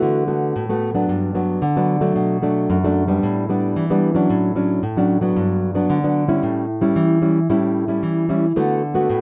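Playful and lively, this brief samba moves at 112 BPM in a straight 4/4 feel, set in D major. A solo nylon-string guitar carries the whole excerpt from 0.0 to 9.2 seconds, its warm, acoustic, classical tone sitting up front, with thumb-plucked notes spanning F#2 to F#4. Small finger squeaks on the strings add an intimate, human texture. The harmony moves through D6, Gmaj7, Bm7 and A9sus4, then Dmaj7/A, Gmaj7 and A7 before settling back on D6 at 8.6 seconds. Close, detailed microphones and light reverb keep the sound clear and present, and the passage is cut from a longer piece.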